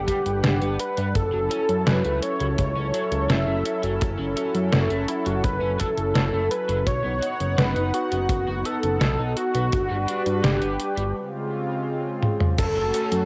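A thick, bright unison lead carries the melody of this moody, nocturnal synthwave excerpt from the first moment, its vibrato colored by cassette tape and analog delay. It rides over a shimmering chorused pulse-width pad and a fat, saturated analog bass, both pumping with the sidechain, while a detuned 8-bit drum machine with a medium-tuned snare, cabasa, hi-hat, toms and crash sits up front beside a punchy acoustic kick from a big room. An overdriven, double-tracked electric guitar riff hovers in the background with subtle chorus and tape echo, and a break arrives at 11.2 seconds, capped by a drum fill at 12.2 seconds, all within a moderate spring reverb on a home cassette recording.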